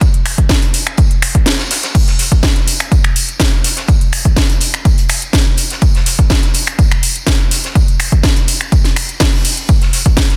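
An overdriven electronic kick drum sits up front and punchy, driving this joyful, uplifting house excerpt at 124 BPM in a straight 4/4. Alongside it, a layered, overdriven house drum kit brings a cracking snare, metallic hi-hats, finger snaps and crash cymbal, both parts re-recorded in a large room. Underneath in the background, a big rock drum kit adds a dark, smooth body with a fat snare, hi-hat and tambourine, its hats and percussion pumping against the sidechain and thinned by high-pass filtering. From 2.0 seconds, a very quiet, distant tambourine part joins, blending egg shaker and group handclap textures in a large acoustic space. A brief break at 1.5 seconds interrupts the groove, and the whole is delivered as a dense, heavily limited modern master with little reverb.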